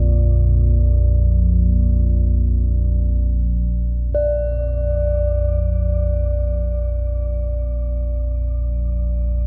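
A cavernous, echoing space surrounds this 9.5-second fragment of dark ambient drone, its moderate cathedral reverb letting every sound hang in the air. In free time and centred on B-flat major, tuned slightly sharp to A4 = 441 Hz, a deep, ominous drone rumbles up front between Bb1 and F2. Its detuned, vintage tone, built from triangle and sawtooth waves, warbles, rising on a slow attack and sustaining into a long release inside its own reverb. Softer, a bronze singing bowl, struck with a felt mallet, rings a single metallic D5 with slow beating. Close-miked and mellow, the bowl carries a shimmer reverb that lends a meditative glow against the drone's murk, and the texture changes character at 4.1 seconds as both parts hold on.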